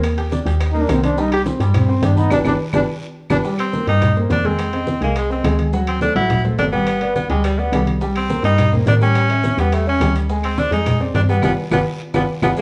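A bright, close-miked trombone solo opens this driving, passionate salsa excerpt over a brilliant concert grand piano, a round, dark FM bass up front, and a bed of low-tuned congas, ringing timbales, tight bongos and cowbell, woody claves, raspy guiro and grainy maracas, until an edgy, forceful tenor saxophone with scooped notes takes the lead at 3.6 seconds, all of it wrapped in moderate large studio reverb and the warbling pitch drift of worn cassette tape.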